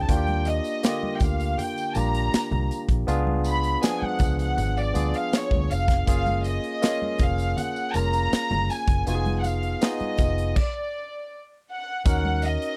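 A bowed violin section, a barky tine electric piano and a muted fingered electric bass open this silky, cinematic slice of lush 1970s-style soul at 80 BPM in Eb minor, with the drum kit joining at 0.1 seconds. The violins carry the melody high and up front with a soft attack, their pure, floating sul tasto tone giving the ensemble a gentle, airborne quality. Beneath them, the electric piano's lightly overdriven comping comes through a combo amp, while the foam-muted bass sits dark, round and punchy. The polished drum kit, in an airy studio room, features a punchy kick, a medium-tuned snare, hi-hat and crash cymbal, backed by bright, thin-skinned congas in the background and a very quiet, jingly tambourine. The harmony moves through Ebmaj7, Db7b9, Gbmaj9 and Fm7b5 before the band drops into a stop at 10.6 seconds, landing on Ebm7 at 12.1 seconds. The sound is dry and close, with little reverb, in keeping with a 1970s studio recording, and the clip is cut from a longer piece.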